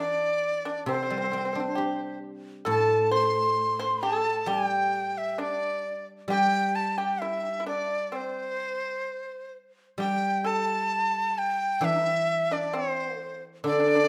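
Flowing freely in rubato around 66 BPM in 4/4, this graceful, pastoral excerpt of Chinese traditional chamber music in G zhi mode sets a breathy, close-miked bamboo dizi with a buzzing membrane, vibrato and tongued notes up front on the melody, above a dry, percussive fingerpicked pipa on the second line and a ringing, silvery guzheng accompaniment, all three playing throughout the 14.1 seconds in a moderate recital hall reverb.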